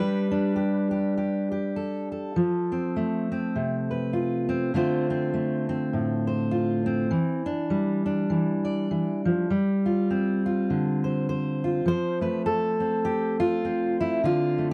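Folk piece at 101 BPM with a light swing, a peaceful, nostalgic excerpt for a lone fingerpicked steel-string acoustic guitar whose full-bodied jumbo tone sits up front in a dry, close 1970s-style studio sound, moving through Gadd9, F, Dm7, Cadd9/E and G7sus4 before settling back on F at 11.9 seconds.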